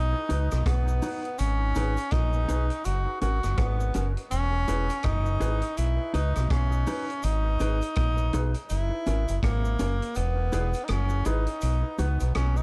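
A breathy tenor saxophone carries the melody up front in this meditative roots reggae excerpt, its vibrato-laced tone trailed by dub echo. Underneath, a deep fingered electric bass sits dark, round and prominent, anchoring a laid-back 82 BPM groove in 4/4 with a swung sixteenth feel. A mellow, clean electric guitar adds compressed, fingered accompaniment lower in the mix, also soaked in dub echo. A vintage drum kit with a punchy kick, rim click and hi-hat has a natural studio-room sound and a rolled-off top, while a cabasa stays in the background. The chords cycle through B, G#m, F# and E, and at 10.2 seconds the kick drops out for the final bars of this dry, echo-heavy mix.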